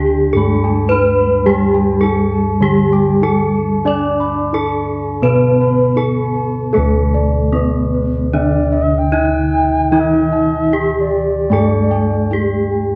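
In a straight four-beat pulse, this serene, ceremonial Javanese gamelan passage is cut from a longer piece. It opens with a bright, airy bronze metallophone melody struck with a horn mallet up front, and its paired tuning shimmers over a smooth, dark wooden-mallet metallophone accompaniment and round, beating bossed gongs carrying the bass. Softer arpeggios from padded-mallet metallophone and bossed gongs ring mellow in the background, while a pure, reedy bamboo xiao with vibrato adds a second line from 8.3 to 12.7 seconds, all heard through recital-hall reverb and worn, warbling cassette tape.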